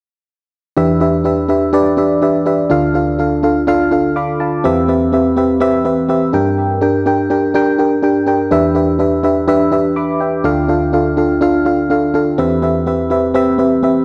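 A mellow FM electric piano, soft, round and dark with a noise layer, chorus and digital delay, carries this nostalgic, glossy pop fragment by itself from 0.8 to 14.0 seconds at 124 BPM with a light 16th-note swing, moving through Em7, Dm, Cmaj7/E and Gm, adding a brief fill at 3.9 seconds, and sitting up front in light reverb with a subdued top end.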